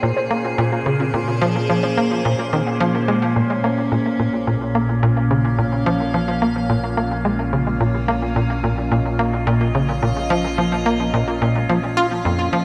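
A lush, wet hall reverb with a long 2.8-second tail surrounds this excerpt of ambient, sequencer-driven space music, setting a mysterious, hypnotic mood at 108 BPM in a straight 4/4. Up front, a tight, punchy sequencer bass drives a nasal sawtooth-and-square riff with a plucked, decaying filter, thickened by lush chorus and tape echo. An evolving wavetable pad, bright and morphing through phaser and its own reverb, sustains chords above it, while a very quiet, warbly, lo-fi pluck with a dusty noise layer traces mellow arpeggios. An airy, breathy wind-like tuned noise texture hovers on C5 over an opening Bbm7 until 3.4 s, when the music settles onto Bb minor. From 4.5 s a vintage analog drone joins in the low register, its pulse-width-modulated tone swimming in chorus beneath the sequence.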